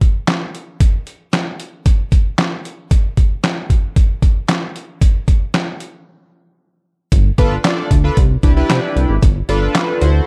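Early-eighties boogie funk at 114 BPM in a straight 4/4, feel-good and danceable, cut from a longer piece and tuned slightly flat of standard pitch. A gritty, pitched-down, sampler-style drum kit opens alone, with a thumpy kick, medium-tuned snare, hi-hat and handclaps, compressed and placed up front with the roomy character of a large space. The drums break at 6.1 seconds, and at 7.1 seconds a glossy, chorused synth bass enters, mellow and sustained, built from pulse and sawtooth waves with a plucky filter. Just after, a bright, detuned polysynth joins with chorus, a sub octave and a filter sweep, filling out the harmony over G7 and Cmaj9. The production is dark and dry, with little reverb.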